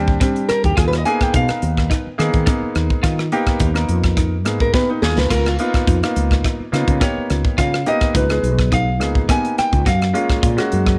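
Over a tight, up-front funk drum kit with a medium-tuned snare and a drum fill at 4.7 seconds, this slick, bright electric jazz fusion excerpt features a small, fingerpicked nylon-string guitar soloing with plate reverb and tape echo, backed by a growly, round fretless bass, a polished grand piano with audible action noise, and dark, scooped stabs from a chorused clean electric guitar sitting in the background.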